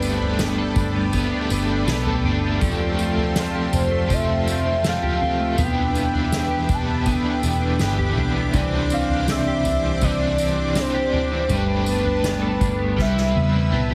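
A straight, unhurried 4/4 groove from a distant, roomy soft-mallet drum kit with a punchy kick and tambourine carries this blissful, dreamy dream pop excerpt, where a velvety, vibrato-tinged synth lead sings the melody over a bright overdriven guitar with tremolo and chorus, a lush warbling detuned pad, dark chorused and delayed clean guitar arpeggios, a round foam-muted electric bass and, from 2.6 seconds, a very quiet ringing vibraphone, all under light reverb and a heavily compressed radio sound that closes on a drum fill at 13.0 seconds.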